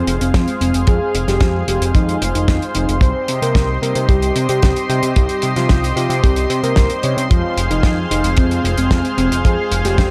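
Recorded in a small room ambience, this italo disco excerpt features a dry, tight acoustic kick drum sitting up front from 0.3 seconds. A damped 70s drum kit plays hi-hat and a fat snare with a rolled-off top, while a thick, detuned sawtooth analog bass with a filter sweep and decaying notes drives the low end prominently. A lush, warbling unison pad holds bright, vintage-sounding sustained chords with a slow attack and long release, and mellow synth brass adds round, dark, brassy stabs with vibrato in the background. Over these, a soft octave-layered synth lead carries the melody, its sub-octave tone shaded by chorus, cassette tape colour and delay. The mood is nostalgic and melodramatic, with the chords moving from Fm to Cm at 3.0 seconds and back to Fm at 7.3 seconds.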